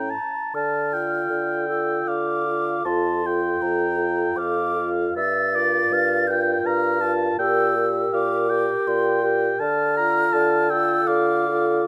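Classical chamber music for wind quintet, this slow romantic movement in D minor moves at 79 BPM in 3/4 with uneven, rubato beats and a melancholic, elegiac mood, heard as a cut from a longer piece. The concert flute carries the melody high above the ensemble with an airy, hollow tone, soft attack and vibrato, while the oboe sings a second line just beneath it, up front and lightly vibrant. A distant, roomy French horn with a clear sound fills in the accompaniment, and a dark bassoon anchors the bass, sitting forward despite its roomy colour. A very quiet clarinet with a smooth top joins the accompaniment at 0.9 seconds. The harmony moves slowly from D minor through G minor seventh colours before returning home, captured with close, detailed microphones and light reverb.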